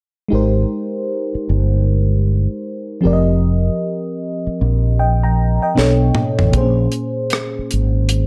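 Dark production with a moderate studio reverb frames this smooth, soulful neo-soul R&B fragment in a swung 4/4, where a soft, round FM electric piano with chorus and a noise layer voices lush chords from Abmaj9 through F9sus4, Bm9 and Bbm9 over a deep, up-front fretless electric bass with analog chorus, and a tight, dry funk drum kit with a high-tuned snare joins at 5.8 s on a fill that runs to 6.5 s.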